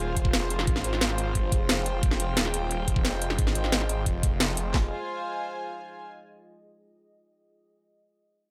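Dark and mechanical, this short excerpt of technical drum and bass runs at 177 BPM in F minor, built on two layered electronic drum kits, up front with a knocking kick, cracking snares, metallic hats and handclaps, and a tape-warm small-room character, over a snarling, growling distorted saw bass that pumps with sidechain. A deep, moody ambient pad with chorus and long release holds sustained chords on Fm, while a floating, sul tasto string section adds bowed texture that carries on alone to 6.1 s after the other parts fall away near 4.9 s. Light reverb sits over the mix.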